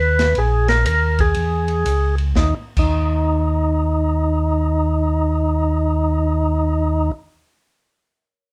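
Late-night and bluesy, this short cut from a longer soul jazz organ trio piece swings at 120 BPM in 4/4. A clean, full-bodied percussive tonewheel organ carries the melody with key click and second-harmonic percussion, while a mellow, round tonewheel organ holds down the bass with chorus vibrato; both organs sit up front through a slow rotary speaker over Bbsus4 and E6 harmonies. A dark, smooth vintage acoustic kit with punchy kick, medium-tuned snare and dark cymbals plays only from 0.2 to 2.9 seconds, leaving the two organs alone in light reverb for the rest.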